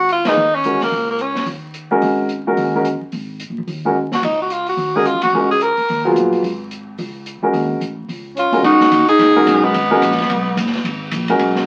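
A brisk, swung 4/4 at 218 BPM drives this spiritual, cool modal jazz excerpt in G# dorian: woody, thumpy pizzicato upright bass and an airy acoustic drum kit with dark cymbals and a boomy kick sit beneath an up-front concert grand piano that lays down sus4 ninth chords with audible action noise. A bright, punchy tenor saxophone carries the melody in forceful phrases full of vibrato and scooped notes, a drum fill lands at 4.0 s, and at 8.4 s a breathy, whispered alto saxophone joins on an intimate subtone second line. The recording sounds like a very old 78 rpm record, with vinyl crackle and wet studio reverb.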